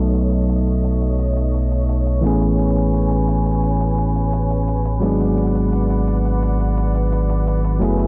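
Liquid drum and bass at 172 BPM with a lightly swung 16th feel, dreamy and lush, cut from a longer piece and carried by a dark, warm production in a digital ambience. An up-front, bell-like tine electric piano provides accompaniment through a low-pass filter and tape echo, with a filter sweep running across all 8.1 seconds, while a smooth gliding synth bass with vibrato and portamento sits prominently beneath and a clear, biting studio string section holds sustained chords over B7, Amaj9 and G#m7b5. A gritty, compressed electronic hi-hat, very quiet, enters at 0.1 seconds.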